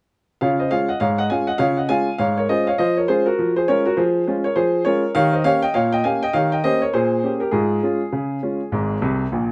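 A clear, up-front baby grand piano opens this playful, cheerful ragtime passage on its own, moving at 101 BPM in 2/4 with a light 16th-note swing in D-flat major. Its open tone spans from deep bass to bright upper notes in a moderate studio ambience, as the harmony travels from Db through Eb7 to an Ab chord. A short piano fill at 9.0 seconds closes this cut from a longer piece.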